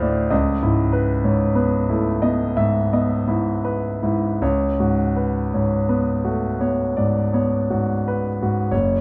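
Close, detailed microphones set in a moderate recital-hall reverb capture a solo concert grand piano, clear and natural with a deep bass and an up-front presence, in this mysterious, wistful impressionist classical fragment, cut from a longer piece, that drifts in a rubato 3/4 at roughly 38-52 BPM, spanning F#1 to F5 over 9.0 seconds as a C#m9 chord at 0.3 seconds gives way to C#7sus4 at 4.4 seconds.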